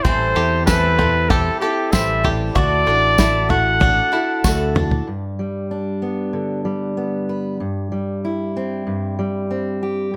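Indie folk with a building arrangement, uplifting and anthemic, moving at 95 BPM in a straight 4/4 in G major, cut from a longer piece. A breathy, up-front trumpet carries the jazz-style melody with light vibrato and a smooth top, set in plate reverb, over a boxy old ladder-braced acoustic guitar whose picking shows some finger squeak. A twangy bluegrass banjo played with fingerpicks adds percussive arpeggios, doubled by slapback echo and plate reverb, while a punchy fingered electric bass sounds bright and direct. A cloth-damped, thuddy drum kit with a fat snare, tight kick and rolled-off top sits dry and dark alongside a jingly tambourine, and a drum fill at 4.4 seconds closes the opening section as the chords move from Am7 to Dadd9. At 5.1 seconds those earlier parts drop away and a fingerpicked steel-string dreadnought guitar takes over up front, playing through G and C/G in light studio reverb.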